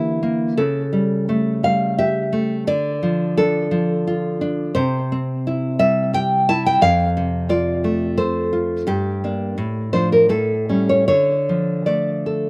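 This romantic piece for solo classical guitar is an intimate, passionate excerpt in D minor, moving in a rubato 3/4 between 74 and 89 BPM, with tuning set to A4 = 439 Hz. A fingerpicked nylon-string guitar carries everything alone from 0.0 to 12.5 s, ranging from F2 to A5 with a full-bodied, deep classical tone sitting up front. Finger squeaks add a close, human detail, and a slapback echo lends the acoustic sound a doubled edge. The harmony opens on Em7b5/D and A7/C#, settles on Dm, then passes through C, F and Gm before Dm/A and A7 lead back home to Dm at 11.1 s. Recorded outdoors, the sound is dry and immediate, with little reverb around the guitar.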